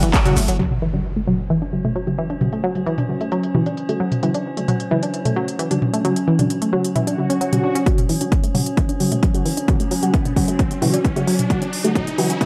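A band accent opens this dark, hypnotic stretch of driving peak-time techno in F# minor at 132 BPM, with a brief punch of overdriven electronic kick and a growling, buzzy 808-style bass note on F#1 that decays within 0.6 seconds. A nasal, detuned analog pluck riff and aggressive, thick rave stabs run throughout, both coloured by chorus, tape echo and sidechain pumping, the pluck adding phaser while the stabs carry their own reverb. An overdriven techno kit of handclaps, smooth hats, ride, shaker and toms sits beneath an impact at 0.6 seconds, while filter sweeps work on the drums and the synth arpeggio sound. An eerie, metallic FM drone with a slow attack and long release creeps in at 1.5 seconds, and after a swell the up-front kick returns at 7.9 seconds to launch a build-up where a riser climbs, the stabs are swept by a filter, and a drum fill arrives near the end. The dry, gritty hardware sound is framed by a moderate digital room reverb.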